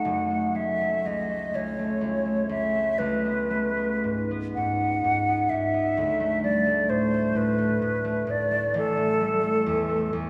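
A hollow, airy concert flute carries the melody up front and close-miked, its vibrato and crisp attack giving each phrase a clear edge as it moves between A4 and F#5. This short impressionist duo is a wistful, mysterious fragment cut from a longer classical piece, set in F# minor with tuning at A4 = 436 Hz. Beneath the flute, an acoustic concert harp accompanies with fingerpicked, ringing tones that reach from F#1 to C#5, sitting just as far forward as the melody. The pulse is slow and rubato, in 6/8 at 37-44 BPM counted in dotted quarters, while the harmony passes through F#madd9, C#5, D5 and A5. A wet concert hall reverb with a 2.5 s decay surrounds the pair, and both instruments sound from the start until the flute stops at 10.1 s and the harp at 10.3 s.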